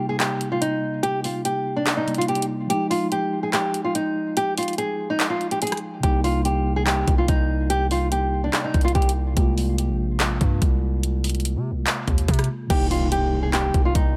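Hip hop with a trap edge, this dark, brooding excerpt moves at 144 BPM in a half-time 4/4 feel in C minor, cut from a longer piece. A small, fingerpicked nylon-string guitar carries the melody up front, its acoustic tone softened by a low-pass filter and trailed by delay. Underneath, a mellow, clean tine electric piano sounds as if through built-in speakers and plays chords that move from Cm7 to Fm7 and later to Ab6. An electronic, layered, overdriven drum kit with a knocking kick, handclaps, hi-hat, rim clicks and crash cymbal plays through an opening break, and at 6.0 seconds a heavy, saturated 808-style bass hits with a fast attack and decaying, aggressive growl. The guitar drops out at 9.1 seconds and returns at 12.7 seconds for a short closing section, where a background electronic impact marks the change, all set in light reverb.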